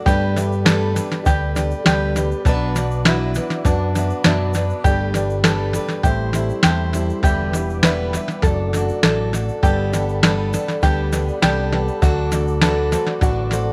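An up-front vintage rhythm box with a deep kick and crisp snare anchors this nostalgic, hopeful indie folk excerpt, entering at 0.1 seconds together with a round, punchy fingered electric bass and a grainy egg shaker. A twangy open-back banjo plays plunky arpeggios with slapback echo, a bright plugged-in archtop guitar adds picked accompaniment with audible finger squeak, and a worn, slightly detuned upright piano sits woody in the background. A very quiet tonewheel organ holds flute-like sustained chords through a slow rotary speaker, over changes that move from Gadd9 through Bm, Am7 and Em7 to D.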